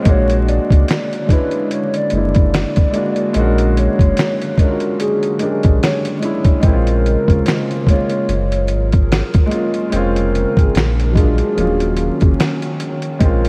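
A dreamy, reverb-soaked mix dusted with vinyl crackle frames this hazy, melancholic lo-fi hip hop excerpt in Bb minor at 73 BPM with a 16th-note swing, where a gritty sampler-style drum kit with thumpy kick, fat snare, hi-hat and finger snaps sits up front beside a deep sine sub bass with octave and a dark, woody upright piano run through cassette tape, while a hollow clarinet-like synth lead with vibrato and delay carries the melody over a nostalgic, warbling tape-like pad in the background, the chords moving from Bb7alt into a section beginning at 6.6 seconds that passes through Bbm9, Gbmaj9 and Ebm7.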